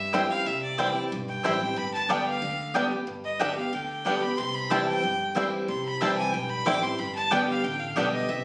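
Bluegrass in C major at a brisk 184 BPM in straight 4/4, lively and joyful, taken from a longer piece. A clear, biting fiddle sits up front and takes the solo across the whole 8.4 seconds, its bowed tone nasal and earthy as it moves between D5 and D6. Beside it, a full-bodied dreadnought guitar picks the accompaniment, also up front, while a twangy, percussive banjo played with fingerpicks spins arpeggios and a bright mandolin with its doubled strings adds woody stabs. A pizzicato upright bass stays in the background, its low notes soft beneath the others. The harmony simply alternates between C and G, and the band sounds as if captured on a phone in the room, with moderate studio reverb around it.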